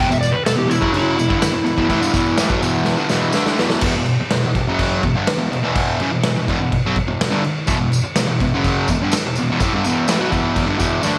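Raw and swaggering, this garage rock excerpt opens with a dark, overdriven slide guitar solo that lasts only until 2.4 seconds, over a bright, double-tracked fuzz guitar riff pushed up front, a punchy, saturated drum kit in a pumping stone room that plays a fill ending at 3.8 seconds, and a jingly vintage tambourine tucked in the background, all within a small, lightly reverberant room.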